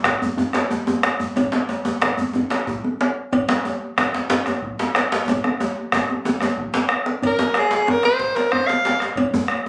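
West African traditional drumming drives this powerful, festive excerpt cut from a longer piece, set in a 12/8 metre. A deep, dark bombo anchors the ensemble, while a metallic cowbell rides above it and two djembes fill the middle: one band-limited with a vintage character and hard hands, the other carrying metal rattles and sounding more distant. A drum fill from 5.3 to 7.2 seconds pushes the groove toward a new section. At 7.3 seconds a clear soprano saxophone enters up front, playing a short, jazz-style solo line with vibrato, close-miked and bathed in plate reverb, before falling away at 9.0 seconds. The whole performance sits in a lively studio ambience, captured on a phone in the room.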